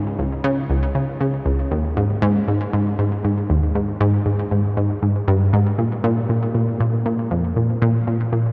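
Steeped in a huge reverb with a long 8.2-second tail and a cassette-tape grain, this brief fragment of a longer ambient piece unfolds as if in a vast, echoing space. A single up-front analog pluck, round and detuned with a sawtooth edge, a fast attack and a decaying tail, carries the whole passage in the low register from Db2 to Db3, shimmering through chorus and delay. Set in Bb dorian at a straight 118 BPM in 4/4 and tuned slightly flat to A4 = 437 Hz, it feels cosmic and hypnotic.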